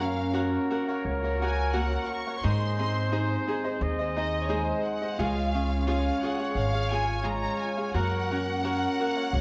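A romantic, proud mariachi passage cut from a longer piece opens with a bright, intense bowed violin section singing the melody in loose rubato around 87 BPM in F# major, joined by a lightly vibrato classical trumpet on a second line, a crisp picked cavaquinho, ringing fingerpicked concert harp arpeggios, a woody, thumpy pizzicato upright bass up front and a very quiet, dark violin section holding soft sustained chords, all moving through F#, G#, C# and back to F# within a wet recital-hall reverb and the warbly pitch drift of worn old cassette tape.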